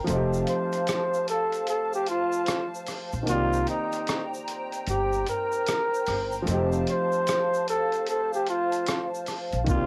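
Reflective and melancholic, this swung 75 BPM lo-fi hip hop excerpt, cut from a longer piece and moving between F7 and Cm7, features a veiled, raspy bucket-muted trumpet playing a growling jazz solo with vibrato and scooped notes through a low-pass filter and cassette tape coloring, over a warm upright piano, a hollow flute-like pad with ensemble chorus, an up-front pizzicato upright bass that is dark and woody, a muffled, pitched-down sampler-style kit with a thumpy kick, hi-hat and rim click, and a grainy tube shaker, all set in a small room on a home cassette recording.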